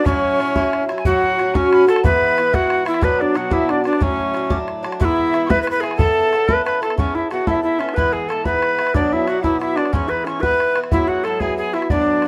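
Rollicking and cheerful, this Celtic folk jig moves in 6/8 with a straight feel. A tenor recorder carries the melody up front, its woody, airy tone marked by tongued notes, a chiff and vibrato. Above it, a breathy metal whistle plays a second line with a crisp attack and its own shimmer of vibrato, sitting further back in the mix. An Irish bouzouki picks the accompaniment on its paired strings, mellow yet faintly metallic, while a damped, tight bodhran sits close and dry from 0.1 seconds onward. The harmony moves through chords such as F#m, E, Bm and D before a second section begins at 7.0 seconds and settles on Eadd9, all within a moderate small-room ambience in this excerpt cut from a longer piece.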